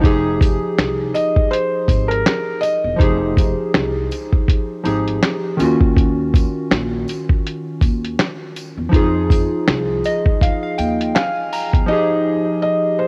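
A hazy home recording on cassette with small room ambience opens this short, nostalgic lo-fi hip hop fragment in F minor, moving at 81 BPM in 4/4 with a gentle swing on the 16ths. The sampler-style drum kit sits up front, compressed and muffled, pairing a thumpy kick and medium-tuned snare with hi-hat and finger snaps, all colored by cassette tape. Beneath it, a dark, woody pizzicato upright bass on steel strings and round, detuned analog keys with chorus, a filter sweep and fast, decaying notes carry the Fm9, Ebm9 and Fm7 harmony, while a jingly tambourine rings from a distant large room in the background. A soft, felt-muted upright piano with audible action noise plays the intimate, mellow melody from 1.1 seconds, bathed in tape echo, and a synth keys fill arrives at 9.7 seconds. The piano returns at 11.2 seconds and lingers with the keys to the close, leaving a reflective mood.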